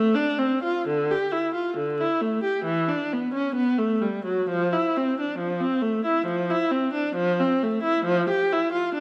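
Freely paced in a rubato 4/4, this solemn, introspective baroque-style suite movement for unaccompanied viola is cut from a longer piece. A single bowed viola sits up front, its tone warm and smooth with vibrato and an even, smooth top, playing alone from 0.0 to 9.0 seconds across a range from D3 to G4. The instrument is wrapped in a wet recital hall reverb, with a layer of vinyl crackle adding an aged patina.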